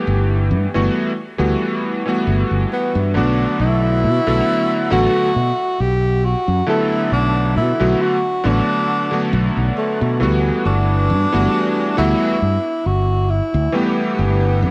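A breathy tenor saxophone carries the melody from 2.7 seconds, its mellow subtone, light vibrato and scooped notes drifting through tape echo in a jazz-style solo over a slow, lightly swung 68 BPM vaporwave groove in G major. Beneath it, a bright electric grand piano with a clangy, vintage edge and chorused unisons sustains lush Gmaj13 and Bm7 chords through analog chorus and delay, while a fretless electric bass, amped and tube-saturated, holds the low end with a warm, chorused tone. Cassette tape coloring and light studio reverb give this fragment of a longer piece a nostalgic, faded feel.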